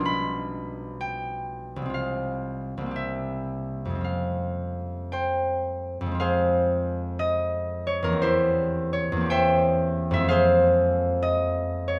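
Gentle and mysterious, this brief classical passage, cut from a longer piece for solo concert harp in F minor, drifts in a rubato 6/8 at roughly 53-65 BPM, its ringing, fingerpicked tone sitting up front in a moderate recital-hall reverb as it states a phrase from 0.0 seconds and restates it from 6.2 seconds, moving through Bdim7, Fm/C, C7 and C7/E back to Fm with the harp tuned to A4 = 445 Hz.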